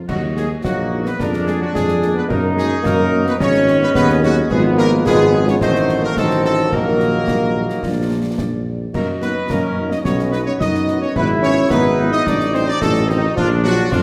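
A punchy, warm trumpet section carries the melody of this stern, martial march for wind band, sounding distant and roomy with a light vibrato and tight classical ensemble playing. Set in Eb minor at 108 BPM in a straight 2/4, the excerpt is cut from a longer piece and stays in one section for its 14 seconds. Beneath the tune, a close-miked tuba anchors the bass with a soft attack, while a punchy euphonium with vibrato and a tight woodwind section supply second lines from the background. A loose, soft-attacked French horn section adds mellow accompaniment from 0.4 s, and a clear, vintage-toned trombone section holds sustained chords from 0.6 s. Clash cymbals, concert bass drum and concert snare drum sit close and dry, with dark cymbals, as the harmony moves from Ebm through chords such as Adim7 and B to close on Bb, all inside a wet scoring-stage reverb.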